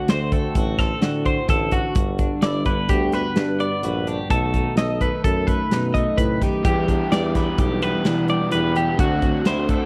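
A dry, close recording with a 1970s studio feel frames this restless, intricate fragment of math rock and midwest emo in E minor, moving at 128 BPM in 5/4 over D7, Gmaj7, B7 and Em7. A warm twelve-string electric guitar picks spring-reverbed arpeggios over a bright, twangy second twelve-string, up front and clean, that picks out chords through a lush chorus, while a distant, roomy tuba with vibrato carries the bass and an acoustic drum kit drives with a punchy kick and a medium-tuned snare. At 6.6 seconds a crunchy, double-tracked overdriven guitar riff joins the mix.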